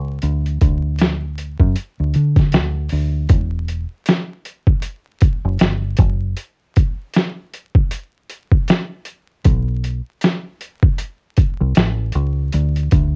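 This lo-fi hip hop fragment in E minor moves at a relaxed 78 BPM in 4/4, its 16ths swung for a loose, nodding feel, and the mood is melancholic and nostalgic. A deep dub fingered electric bass opens at 0.0 s, sitting up front with a dark, round, foam-muted tone that is played direct and amped and thickened by tube saturation. The boom bap sampler-style drum kit enters at 0.2 s with hi-hat, a thumpy kick and a medium-tuned snare; it is pitched down, compressed and gritty, pushed through overdrive and cassette tape, and it stands up front as the loudest part. The same section repeats, and a break arrives at 6.4 s before the groove carries on to the cut. A light reverb, a home recording on cassette and vinyl crackle give the whole a homemade, worn patina.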